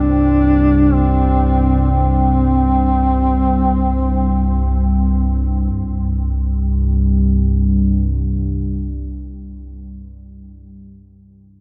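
A huge, wet reverb with a long tail surrounds this dark ambient drone excerpt, and its muffled top end gives the room a murky, sealed-off feel. The piece moves in free time with a dark, unsettling mood, and it rests on a C5 chord from the opening. A deep, ominous drone sits up front in the low register, built from detuned, wave-folded triangle and sawtooth tones that rumble with a slow attack, long sustain and long release inside their own reverb, and it holds through to 9.9 s. Over it, a solo duduk carries the melody up front in a narrow range, sounding mellow and vintage with a folk-style vibrato, scooped notes and a punchy edge, all blurred by a diffuse ambient delay. The duduk falls silent at 4.7 s, leaving the drone to carry the rest of the clip, which is cut from a longer piece.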